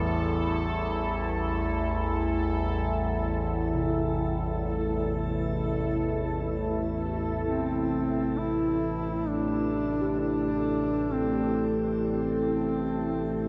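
A deep, detuned sawtooth pad with shimmer reverb holds sustained A minor chords over an up-front, resonant low drone of moving overtones to open this cavernous, dark ambient drone piece in free time, alongside a bright, bubbling texture of random filter steps that stops at 7.4 seconds, while a metallic bronze singing bowl rings meditative arpeggios through tape echo in the background from 3.8 seconds, and a mellow, vibrato-laden duduk with scooped notes carries a folk-style solo melody up front from 7.5 seconds as the harmony shifts to Am7, all inside a huge, wet reverberant space.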